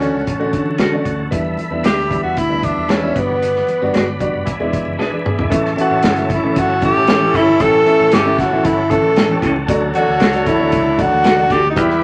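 Uplifting, joyful 1960s-style soul cut from a longer piece, led up front by a breathy, scooped tenor saxophone melody over woody, boxy upright piano, a clean tonewheel organ with key click and fast rotary speaker, a direct fingered electric bass, a dark, dry drum kit that plays a fill at 5.0 seconds, very quiet low-tuned congas and slightly broken-up, phaser-tinged electric guitar stabs in the background, with a distant, roomy horn section adding a tight second line from 6.6 seconds, all under a large studio reverb and vinyl crackle.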